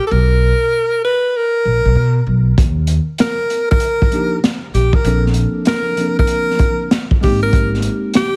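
A clear alto saxophone leads this relaxed, cool jazz-hop excerpt, playing a jazz-style solo line with vibrato, close-miked and up front with a slapback echo. Woody, growly pizzicato upright bass on steel strings sits alongside it from the start. A crunchy breakbeat kit arrives at 2.6 seconds with a punchy kick, high-tuned snare and hi-hat, its sound gritty, saturated and dark with a rolled-off top, as if from a small room. A worn, slightly out-of-tune tine electric piano joins at 4.1 seconds, clean and direct, sitting lower in the mix beneath the horn. The harmony moves from Ebmaj9 to Bbmaj9 and then Abmaj9 over a swung groove, and the whole track is dry and heavily compressed, giving it a radio-like sound.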